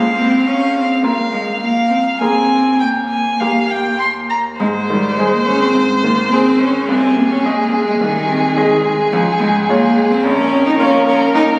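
In a flexible 4/4 with plenty of rubato, this quick, spirited classical-period movement for piano trio, cut from a longer piece, moves with a lively lilt. A single bowed violin carries the melody up front, its tone focused and full of vibrato yet slightly distant. A close, rich bowed cello sings a second line just beneath it. A brilliant grand piano with short sustain supplies the accompaniment across a broad span of the keyboard, polished and present. The harmony opens on Bbm/Db and moves through Ebsus4 to Eb before a new section arrives at 4.6 seconds on Ab, then travels through Ab/C and Db to Bbm. The sound sits in a spacious scoring-stage reverb, captured on a phone in the room with extra club reverb and compression, which lends the trio a bathed glow.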